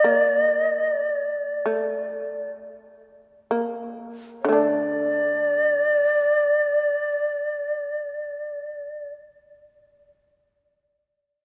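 Japanese traditional chamber music, still and solitary, this excerpt has an airy bamboo shakuhachi carrying the melody up front, its end-blown tone tongued and touched with vibrato. Beneath it, a powerful fretless shamisen plays a second line, plectrum-plucked with a buzzing, percussive bite. The opening slows until about 4.4 seconds, and both instruments stop just after 9 seconds, leaving a long, wet church reverb to ring on.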